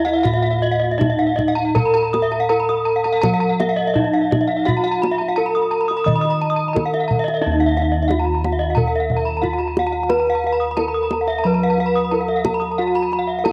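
A dark, smooth bronze metallophone carries the melody in this brilliant, ceremonial Balinese gamelan piece in Eb pelog, moving at a straight 80-90 BPM in 4/4, its paired tuning giving shimmering beats. Above it, two more bronze metallophones play arpeggios, one airy and the other close-miked, dry and full. Round, beating bossed gongs sit up front in the bass with tube saturation, while a tight kendang struck with hard hands enters at 0.1 s, and the whole passage, cut from a longer piece, shifts to a new section at 7.4 s inside a lush hall reverb on a home cassette recording.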